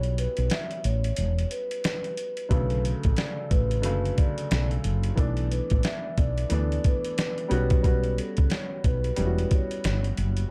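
A swung 90 BPM boom-bap groove in 4/4 drives this short, reflective and dark hip-hop cut, lifted from a longer piece and opening on a break that runs to 2.5 seconds. The dusty, sampler-style drum kit sits up front with a thumpy kick, fat snare and hi-hat, its compressed, gritty sound carrying the air of a large room. Beside it, a woody fretless electric bass growls low and round, amped and punchy with a hollow-body character. A dark upright piano plays the accompaniment with a worn, intimate feel, audible action noise, slight detuning and long sustain, colored by cassette tape. Above it, a vibraphone struck with soft mallets, motor off, carries the melody in a metallic, ringing tone touched by digital delay. The harmony moves from a rootless A13 to Bm9 and Asus24 before returning to A13, all within a dry, dark and warm production.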